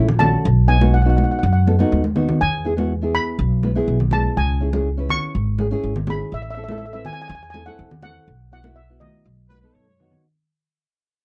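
A dry, close 1970s-style studio sound frames this festive, bouncy calypso cut from a longer piece, moving at 123 BPM in a straight 4/4 and fading out across its whole length. The shimmering, metallic lead steel pan, struck with soft rubber sticks, carries the melody over thumb-plucked classical nylon-string guitar chords moving from B through E, C#m and Am to Bsus4. A woody pizzicato upright bass sits up front alongside ringing, high-tuned vintage congas, drum fills arrive at 1.8 and 9.9 seconds, and a faint, punchy horn section with light vibrato slips in at 9.5 seconds.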